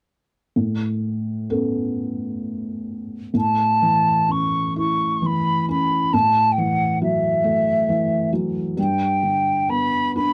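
A woody, pure-toned baroque flute with vibrato, a soft attack and a somewhat unsteady quality sits up front carrying the melody of this wistful, tender Celtic slow air from 3.4 seconds, over a felt-muted upright piano whose dark, mellow, intimate accompaniment begins at 0.6 seconds, its thick felt and audible action noise lending a vintage character to the rubato, unevenly pulsed three-beat flow, captured in a dry, close 1970s-style studio sound with light reverb in a fragment cut from a longer piece.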